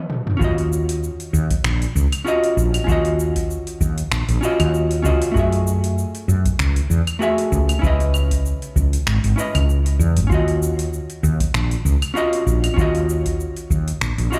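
A relaxed 97 BPM groove in 4/4 with a light 16th-note swing opens on a brief drum fill before the deep house kit of claves, finger snaps, metallic hi-hat, shaker and toms settles in, its overdriven sound re-recorded in a large room, joined at 0.4 seconds by a dry, deep, tape-warm electronic kick. This wistful sunset chillout piece sets a dark, clean, picked vintage hollow-body jazz guitar up front with delay, drifting through minor ninth chords from Ebm9 to Gbm9, Dbm9 and back, while a growly, round fretless electric bass with tube saturation sits low and close beneath it. Light digital ambience and a big studio reverb give the passage, cut from a longer piece, a spacious, roomy finish.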